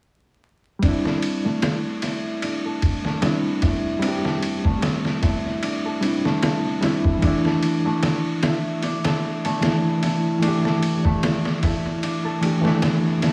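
An up-front, sampler-style drum kit anchors this hypnotic, cinematic trip hop excerpt at 75 BPM in 4/4, with a lightly swung sixteenth feel. Its compressed, pitched-down sound pairs a thumpy kick and a medium-tuned snare with ride cymbal, all carrying a gritty edge and tape echo. A reedy electric piano provides the accompaniment, clean and direct, its harmonic tremolo dressed in 12-bit sampler grit, a low-pass filter and tape echo. A mellow, thumb-plucked concert harp rings out arpeggios through analog delay and the same lo-fi grit, with a filter sweep running across its part. All three play together from 0.8 to 13.3 s, moving from Cadd9 to Dsus2 at 7.2 s. The echo-heavy mix adds light reverb, small room ambience and vinyl crackle, and the excerpt is cut from a longer piece.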